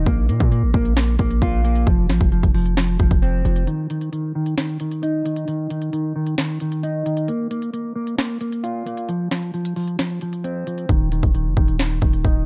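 The production is dark and warm, with very little reverb, in this trap snippet cut from a longer piece, its half-time feel carrying a melancholic, menacing mood. A clean, fingered electric guitar plays mellow arpeggios up front, colored by lush chorus, a low-pass filter and digital delay, as the chords move between Bb5 and F5. The electronic trap kit sits up front, pairing a hard-clipped kick and sharp snare with crisp hi-hats. A punchy, heavy 808-style bass, built from a sine tone with a noise layer, a fast attack and a decaying tail, sits up front beneath them. It drops out at 3.7 seconds for a break while a filter sweep begins on the guitar, and it returns at 10.9 seconds.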